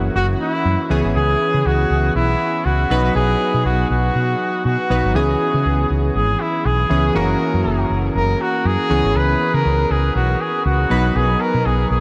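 Urgent yet moody, this cut from a longer 1980s-style pop piece moves at 120 BPM in 4/4, with a light 55% swing on the sixteenths and a C# dorian color tuned to A4 = 441 Hz. Analog keys carry the accompaniment from 0.0 s, their detuned sawtooth and pulse-wave tones, touched with ring modulation and a filter sweep, giving fast-attack, decaying chords thickened by chorus. Up front from the start, a woody fretless electric bass sounds dark, round and hollow-bodied, anchoring the low end. At 0.2 s a clear flugelhorn takes the solo melody in a pop style, its vibrato set distant and roomy within a diffuse ambient delay. The harmony circles F#7, C#m7 and B, while a huge ambient reverb with a 7.2 s decay soaks the whole mix in a dreamy haze.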